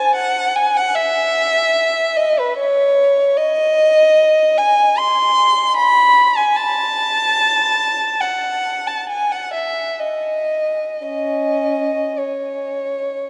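Yearning and meditative, this classical fragment from a longer piece features a solo bowed violin in C# minor, moving freely in 3/4 at roughly 52-77 BPM with expressive rubato, its dark, woody tone, smooth top and vibrato sitting up front between C#4 and B#5 while a wet cathedral reverb with a 4.4-second tail surrounds it for the full 13.3 seconds.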